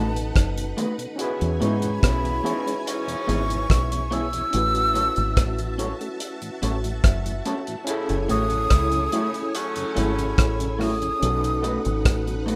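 A breathy, mellow concert flute carries the longing melody high over this smooth lovers rock reggae groove at 72 BPM in F# dorian, its lines trailing off into dub echo. A deep, round fingered bass and a cloth-damped, thuddy drum kit sit up front, while stabs from a slightly broken-up guitar, a barky overdriven tine electric piano with tremolo and a brief fill from 6.6 to 7.9 seconds, a dark tonewheel organ on slow rotary, shimmering string-machine violins and a tight horn section entering at 1.2 seconds fill out the harmony over chords moving from B7 through E6, A6 and F#m7. The rough home-demo mix has light reverb, and this short cut is taken from a longer piece.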